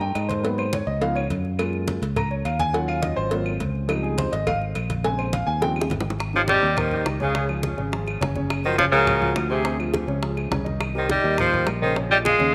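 A straight, brisk 4/4 at 208 BPM drives this sunny, sophisticated Afro-Cuban jazz excerpt in Ab major. Low-tuned congas with a thick skin, tight high-tuned cowbell and bongos struck with hard hands, and distant woody claves sit under a warm grand piano that leads the opening over an up-front fingered electric bass, moving through rich chords such as Abm9, Gbmaj9 and Dbmaj9#11. At 6.4 seconds a clear, vintage-toned tenor saxophone takes the melody with vibrato, scooped notes and tape echo, shadowed in the background by a breathy, bright metal flute with a crisp chiff, all set in a moderate echo-chamber reverb.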